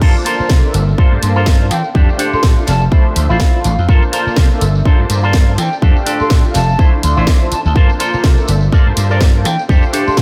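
Sensual and funky, this filtered disco house excerpt moves at 124 BPM in 4/4 with a 16th-note swing, set in G dorian over a cycling Gm11, F69 and Dm9 progression. A punchy electronic kick sits up front, with a house kit adding a cracking snare, warm hats and crash cymbal, while a tambourine, joined by maracas and group handclaps, stays in the background with its own low-pass filtering. The amped vintage slap bass carries the low end, and a mellow synth brass pad, round and detuned with chorus, phaser and vibrato, fills out the harmony beneath a bright, twangy electric guitar riff shaped by an envelope filter and coated in 12-bit sampler grit. At 1.7 seconds a breathy silver concert flute enters with the melody, its crisp attack and unsteady vibrato carried by delay and the same gritty sampler texture. Sidechain pumping runs through the bass, brass, guitar, flute, hats, cymbals and percussion, and a low-pass filter dulls the bass, brass, guitar and flute, while the drums and percussion sit in a small room and light reverb covers the whole mix.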